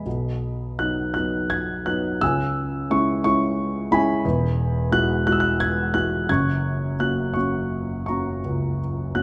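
In a rubato 6/8 lilt at about 52-60 BPM, counted in dotted quarters, this brief classical fragment for solo grand piano unfolds a calm, lyrical mood in B major, tuned to A4 = 439 Hz, moving through B, C#m, Eadd9 and F# across its 9.2 seconds. The piano sounds dark, mellow and slightly worn, spanning E1 to G#6, and it sits up front and intimate with the natural action noise of the instrument clearly audible. A moderate recital-hall reverb of about 1.5 seconds gives the playing a gentle, warm bloom.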